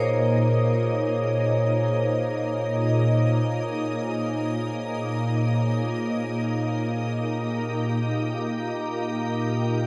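A soft, organ-like pad sits up front in this reflective, melancholic ambient fragment, holding sustained chords in free time from Bb2 up to Eb5 with a pure, bright tone, slow attack, long release, ensemble chorus and its own reverb. Behind it, a vibraphone struck with hard mallets and its motor off plays metallic, ringing arpeggios between Bb4 and Db5, carried off by a diffuse ambient delay. The harmony rests in Bb dorian on a Bbm11 chord before moving to a rootless Cm7/Bb at 6.9 seconds, the same moment the vibraphone stops and the pad carries on alone to 9.9 seconds. A huge reverb with an 8.1-second decay soaks the mix, giving the short passage, cut from a longer piece, a dreamy, suspended calm.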